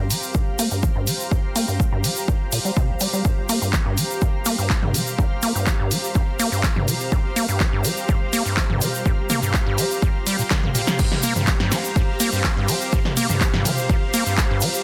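A straight groove drives this hypnotic, gritty acid house clip, cut from a longer piece, with a punchy electronic kick sitting up front. An analog drum machine, re-recorded in a small room, adds a punchy snare, handclaps, hi-hat, ride, crash and toms, with a short room sound on the snare, claps and hats, while a grainy, bright egg shaker rattles in the background. The square-wave acid bass carries the riff with a squelchy, hollow, resonant filter pluck, roughened by overdrive, pumped by sidechain and trailed by delay, and a filter sweep runs across it for the first 11.0 seconds. Above it, a granular cloud pad of detuned unison sines drifts as a blurred, evolving, full-bodied texture, slow to rise and long to fade, bathed in its own reverb and breathing with sidechain pumping. A drum fill at 10.5 seconds leads into the drop at 11.0 seconds, all captured in a dry, dense, heavily limited modern master.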